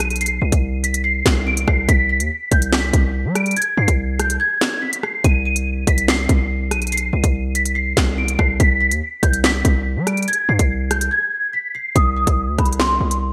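A bell-like large celesta carries a delicate, ringing melody with an ensemble chorus, over a heavy, distorted 808-style bass and an up-front drill kit of hard-clipped kick, sharp snare, crisp hats, handclaps and rim clicks soaked in gated reverb. This ominous, cold drill excerpt in C harmonic minor moves at 143 BPM with a half-time feel, cycling between C minor, G over C and A-flat over C in a bright 1980s-style digital sound. The kick briefly drops out at 4.4 seconds, and a break at 11.1 seconds leads into a closing section at 12.0 seconds.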